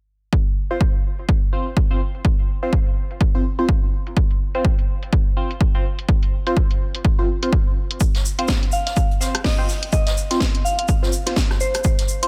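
A punchy, up-front electronic kick drives this bouncy, aggressive bass house excerpt at 125 BPM with a swung 16th feel, joined by a layered house kit with a cracking snare, filtered hats and a small-room character. A nasal, band-passed chord stab built from detuned sawtooth and triangle tones pumps with sidechain movement through phaser, 12-bit sampler grit and dub echo, while an acoustic brush kit with a high-tuned snare and shaker slips in at 8.0 s. At 8.7 s a pure, warbling FM bell adds a gentle melody between C5 and F5, colored by chorus, phaser and dub echo.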